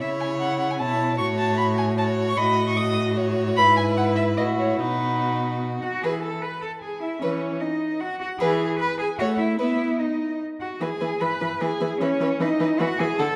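A straight, quick 3/4 at 151 BPM drives this spirited, graceful classical-period movement for string quartet in E major, a passage cut from a longer piece. A vibrato-rich first violin carries a smooth, even melody from a distant position. The second violin sits close with its own line, while a focused viola fills in the accompaniment and a bowed cello anchors the bass up front. All four play throughout in a dark, warm production within a reverberant recital hall, moving through chords such as F#m7/A and B before settling on E and a B/E near 12.0 seconds.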